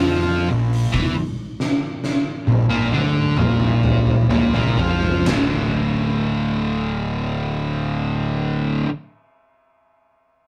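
Stoner and doom metal with a heavy, sludgy mood, cut from a longer piece. A double-tracked, compressed fuzz guitar plays a distorted picked riff up front over an overdriven fingered bass, while an oversized low-tuned drum kit with a boomy kick and fat snare, saturated and gritty in a bright stone room, enters at 0.7 seconds and plays a fill as the music slows down before dropping out at 5.5 seconds. The rough rehearsal-room sound carries tube saturation and moderate studio ambience, with guitar and bass ringing on through the second section.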